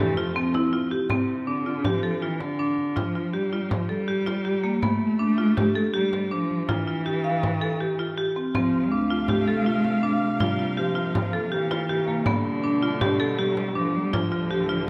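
Contemporary instrumental chamber music in an uneven 5/4 meter, this short cut from a longer piece moves at 161 BPM with a straight feel in D minor, carrying an urgent, restless mood. A marimba struck with hard mallets plays bright, woody arpeggios on rosewood bars, sitting up front with a percussive, airy edge. Beneath it a single bowed cello plays a focused second line with vibrato, its tone rich, while a lush studio string section holds smooth-topped sustained chords at the opening, drops out at 1.1 seconds and returns at 8.5 seconds. A frame drum played with hard hands adds compressed, saturated percussion from 0.4 seconds almost to the close. The harmony cycles through chords such as Dm7, Fsus2, Gadd9 and C7sus4 before settling on Dm, all set in a moderate concert hall reverb.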